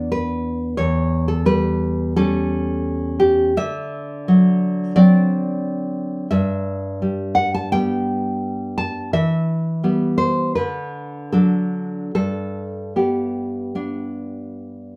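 Sunny and nostalgic, this romantic piece for solo classical guitar unfolds in G major with a rubato feel, drifting between roughly 73 and 90 BPM in 4/4. A single nylon-string guitar carries everything from 0.0 to 15.0 seconds, fingerpicked with a full-bodied, deep classical tone and placed up front in the mix. Its range stretches from E2 up to A5. The harmony moves from E7 through A7 over E and D7 before settling on G at 6.3 seconds, then passes through E minor and D to return home to G. The sound sits in a moderate studio reverb, like a performance captured live in one room, and the instrument is tuned slightly low to A4 = 435 Hz. This is a short section cut from a longer piece.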